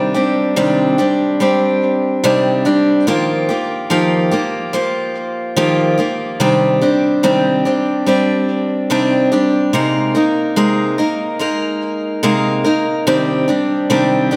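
A pop piece in a melancholic, heartbroken mood, carried entirely by a single picked steel-string acoustic guitar playing alone from 0.0 to 14.4 seconds. The guitar sits up front with a warm, concert tone, its picked notes ranging from C3 to Bb4 and trailed by delay. The harmony moves slowly through Cmadd9, Ebadd9 and Abadd9/C before settling back on Cmadd9 near 13.1 seconds, the added ninths lending each chord a wistful, unresolved color. A moderate reverb, like that of a scoring stage, surrounds the instrument with a sense of space. Cut from a longer piece, this passage feels like an intimate, sorrowful statement.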